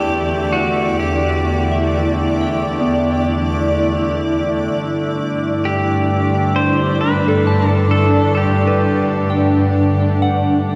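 This luminous, peaceful ambient piece is cut from a longer work and opens with every part sounding at once in a huge, wet reverb space. A bright, up-front granular cloud pad holds blurred, detuned chords that slowly evolve, while an overtone-sweeping drone hums underneath with resonant, moving overtones. A bowed double bass section, expressive with vibrato yet distant in tone, anchors the low end, and a soft FM synth bell scatters gentle, warbling arpeggios through chorus, shimmer reverb and delay. Over this, an electric pedal steel guitar carries the melody with twangy, clean slide lines and volume swells, shimmering with reverb and delay until it falls away at 10.2 seconds. The harmony moves from Em to G at 4.7 seconds, and the remaining parts sustain to the close at 10.8 seconds.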